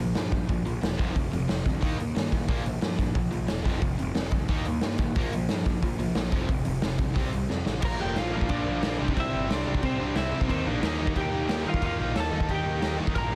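An energetic, rebellious punk rock excerpt charges along at 180 BPM in a straight 4/4, cut from a longer piece. Two bright guitars, one overdriven through a cranked stack and one distorted, pick out the riff from the start, sitting in the background beneath a punchy, fuzz-laden electric bass that mixes direct and amped tone. A raw garage drum kit sits up front with a punchy kick, a medium-tuned snare, hi-hat and crash cymbal, its saturated, gritty sound heard in a bright stone room with a rolled-off top. After a drum fill, the second section opens at 7.8 seconds, where a slightly broken-up, compressed lead guitar enters with a melody, and a tight, double-tracked distorted guitar adds a very quiet riff underneath. The harmony cycles through Bb5, F5 and Eb before shifting to Bb, C and Eb, all within moderate studio reverb and a dense, heavily limited modern master.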